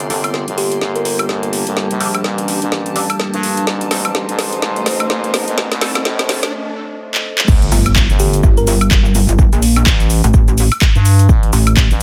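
A dense, heavily limited modern master with digital ambience frames this swaggering, aggressive bass house excerpt, cut from a longer piece with a swung 16th-note feel. A deep, moody pad with a warbling vintage character and long release holds dark sustained chords in the background, while a growling, thick FM bass sits up front and an overdriven garage kit with a woody snare, metallic hats, handclaps, shaker, woodblock and crash fills out the build-up. A soft, floating string section played sul tasto drifts at a distance, a nasal, band-passed chord stab flickers through phaser and delay, a round, tine-like synth pluck adds brief melodic touches, and an electronic riser climbs until a short break at 6.5 seconds. The drop lands at 7.5 seconds, bringing in a punchy layered electronic kick, a pulsing, saturated wobble bass with sidechain pumping, and an impact that rings until 9.4 seconds.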